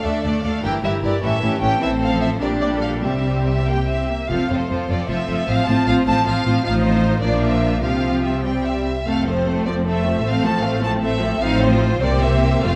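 In a flexible, rubato 6/8, this stormy, restless fragment of a quick classical-period movement for string orchestra moves at 4.3 seconds from its opening section into a second section. A focused, vibrato-rich chamber violin section carries the melody over an intense second violin line, while an up-front, lush viola section fills the accompaniment. Smooth, even cellos sitting in the background and a rich double bass section anchor the low end, all bathed in a dark, reverberant scoring-stage sound.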